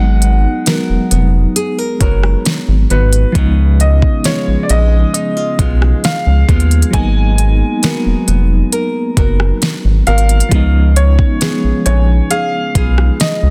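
Longing and late-night in mood, this contemporary R&B passage from a longer piece rocks between G#m9 and C#7 as an intimate grand piano, its action noise audible, carries the melody through a digital delay over a tremolo-tinged FM electric piano. A bright, full-bodied nylon-string guitar adds fingerpicked arpeggios with finger squeak and its own delay, while a very quiet, soft round pluck adds a detuned, chorused shimmer above. A rubbery, hollow square bass sits up front, and a smooth electronic kit with soft kick, fat snare, rim click and smooth hats joins at 0.2 s, all within digital ambience and a dense, heavily limited modern master.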